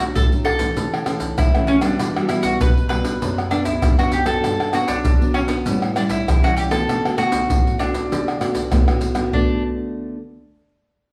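A picked mandolin and a fingerpicked classical nylon-string guitar open together at 0.0 seconds, setting a sunny, playful samba and choro groove in D major at 98 BPM in a straight 4/4. The mandolin carries the melody with a bright, woody tone from its doubled strings, sitting up front. The guitar accompanies beneath it with a warm, fresh-stringed sound, and the occasional finger squeak can be heard. Just after the start, maracas, surdo, pandeiro and tamborim join at 0.2 seconds, with a deep surdo anchoring a vintage, band-limited percussion sound that is also placed up front. The harmony moves from D through A/C#, Emadd9, Bm/F#, Gmaj7 and A7 before settling on D6. The band plays live in one room, wrapped in a generous large-studio reverb, and the percussion drops out around 9.5 seconds while the guitar carries on briefly into a new section of this clip from a longer piece.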